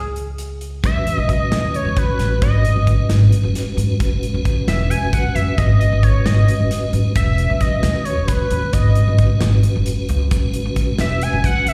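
Progressive instrumental band music in a tense, brooding 7/8, this excerpt from a longer piece sets a bold, hollow lead with an added fifth, sawtooth edge, portamento and slapback echo over a woody, thumpy pizzicato upright bass that sits up front. A modern studio drum kit with a tight kick and medium-tuned snare joins at 0.2 seconds, and a piping tonewheel organ with key click and fast rotary speaker comps from 0.8 seconds through chords moving among Emaj7, G#m and F#7sus4. A grainy, very quiet egg shaker enters at 7.2 seconds, and the whole performance is heard as a live gig through the venue's PA with recital hall reverb.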